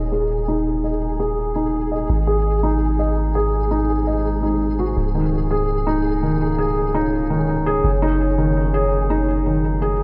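Bright 1980s-style digital production with light reverb frames this dark, cinematic half-time drum and bass excerpt, where a felt-muted upright piano plays soft, intimate arpeggios up front through 12-bit sampler grit, low-pass filtering, delay and a filter sweep; a long sustained 808-style sine bass sits deep and mellow; a moody, detuned sawtooth ambient pad holds chorused, reverberant chords in the background under its own filter sweep; and a grainy, flickering granular texture hovers on a single held note.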